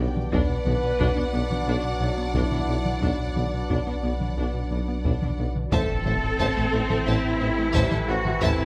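Close, detailed microphones and a light reverb frame this short, tense cut from a cinematic film score that blends symphonic orchestra with electronics, moving at 89 BPM in a straight 4/4 in A dorian with a futuristic edge. Warm, bowed violins carry the melody with vibrato and a smooth top, while a second, lush violin line with a soft attack sits beneath them. Rich violas accompany in the background, and the cellos, a very quiet double bass section, a clear tuba and a pure sine sub bass anchor the low end. A mellow French horn section and a bright, tight trombone section hold sustained chords in the background, shadowed by a very quiet, dark analog pad with a slow attack and chorus that enters at 0.1 seconds. A rubbery, hollow square-wave bass plays a bouncy riff in the background, and a taiko ensemble struck with hard sticks joins in the background from 0.2 seconds. The harmony shifts from B minor to A minor at 5.7 seconds, where a huge, dark impact lands and rings until 8.4 seconds.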